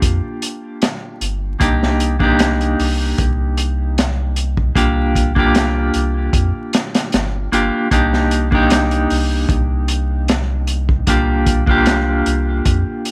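Trip hop in a brooding, hypnotic mood, this short cut from a longer piece rides a lightly swung groove under a crunchy breakbeat kit, gritty and saturated with a punchy kick, a high-tuned snare, hi-hat and a rolled-off top, sitting up front. A soft dub sub bass gives deep, round support with a fast attack and sustained notes, while a clean electric guitar, picked and up front, carries the chords through tremolo and tape echo, circling between Gm7 and Cm9 voicings. A small room ambience and vinyl crackle frame the whole 13.1 seconds.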